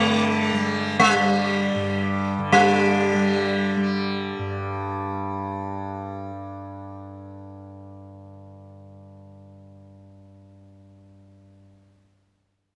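Radiant and devotional, this short excerpt of Hindustani classical music unfolds in free time. An up-front, plectrum-plucked sitar sings a melody between G3 and Ab3 with buzzing sympathetic strings until 6.3 seconds. A softly plucked, shimmering tanpura drone sustains beneath it and carries on alone to 11.5 seconds, both bathed in a moderate spring reverb.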